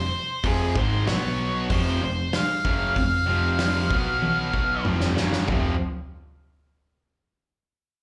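An up-front octave-fuzz lead guitar, dark and picked with distortion, slapback echo and analog delay, carries the melody through this dark, cathartic quiet-loud alternative rock excerpt at 95 BPM, over bright riffs from a background overdriven guitar and a tight distorted guitar, a round, hollow-body short-scale bass, and a distant, roomy indie drum kit with a punchy kick that enters at 0.4 seconds and plays a fill at 4.2 seconds, all heard as a live gig through the venue's PA with club reverb as the chords move between Fm, B5 and F5.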